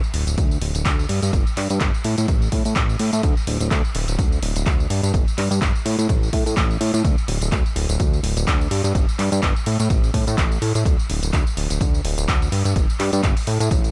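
A digital ambience surrounds this short excerpt of filtered disco house, which moves at 126 BPM in 4/4 with a 55% swing on the sixteenths and carries a nostalgic, groovy mood. Up front sits a fat analog bass, thick and detuned, blending sawtooth and triangle tones with a wave-folded edge, a fast attack and sustained notes between D1 and A2. A low-pass filter and a filter sweep shape that bass from start to finish, and sidechain pumping gives it a breathing motion. A punchy electronic kick with an analog character joins at 0.4 s, while an analog drum machine supplies handclaps, hi-hat and tambourine, its hats and percussion also pumping against the sidechain. The single section runs the full 13.9 seconds, lifted from a longer track.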